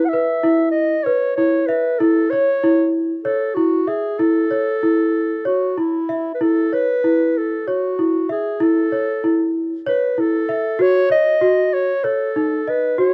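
Contemporary instrumental in 7/8 at 192 BPM counted in eighths, this short excerpt from a longer piece feels hopeful yet restless, set in A lydian with tuning at A4 = 438 Hz. A dark clarinet carries the melody in a classical style, its smooth top sitting up front as a solo voice between E4 and F#5. Alongside it, a worn celesta plays arpeggios from D#4 to E5, up front, bell-like and sweet with medium felt hammers, slightly out of tune and heard in a boxy small room that lends it a delicate, warm glow. Both parts sound from 0.0 to 13.1 seconds, with a second section arriving at 6.4 seconds. A moderate plate reverb surrounds the pair, and the harmony moves from A toward a D#m7b5 near 10.8 seconds, adding a searching edge before the cut.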